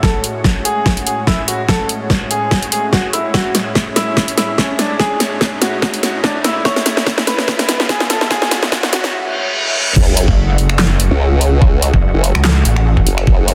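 Menacing and chaotic, this heavy wobble dubstep fragment in F# minor at 145 BPM with a swung half-time feel opens on a clear, open grand piano melody with tape echo over a lush, sidechain-pumped unison pad on F#madd9, a knocking overdriven kick, a dubstep kit with a huge snare, bright hats, snaps and claps, and very quiet risers, building through a filter sweep and reverse cymbal until the drop at 10.0 s unleashes an up-front, detuned, formant-swept wobble bass, joined at 10.3 s by a pulsing, mellow one, both with chorus and overdrive, in a dense, heavily limited mix.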